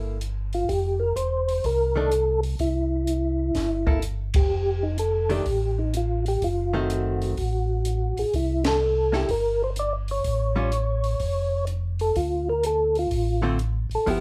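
A soft, flute-like tonewheel organ carries the melody from 0.5 seconds, its percussive second-harmonic attack colored by chorus vibrato and a slow rotary speaker, in this soulful, bluesy soul jazz organ trio cut from a longer piece. A round, mellow organ with audible key click and its own slow rotary speaker holds down the bass, while a hollow-body electric guitar adds clean, compressed, picked accompaniment over swung chords. A compact cocktail kit with a punchy kick and high-tuned snare sounds dark and smooth in a small, lightly reverberant room, and the whole band hits accents together at 4.3 and 8.6 seconds.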